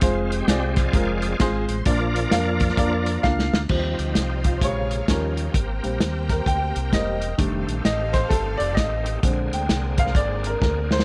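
This 11-second cut from a longer uptempo gospel piece opens on a bright, shouting tonewheel organ solo with key click and a slow rotary speaker, over a woody, slightly detuned upright piano, a round, punchy fingered bass and a dry, muffled soul drum kit swinging at 130 BPM, moving from Fm to Bb. A drum fill at 3.2 seconds hands the lead to the up-front piano at 3.7 seconds, as a lush, bowed string section enters in the background and the chords shift through Eb69, Abmaj9 and F13 to Bb9. The mood is soulful and uplifting, with light studio reverb and a final drum fill closing the cut.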